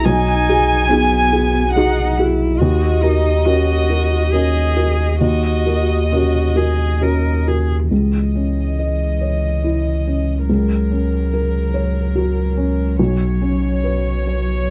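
In a loose, rubato triple metre, this melancholic, reflective neoclassical piece for piano and strings sets a chamber violin section carrying the melody with light vibrato and a soft sul tasto touch above a dark, airy-bowed solo cello line, while a felt-muted upright piano with audible action noise supplies mellow, intimate accompaniment and a round sine sub bass sits up front beneath, in a dry, close 1970s-style studio recording.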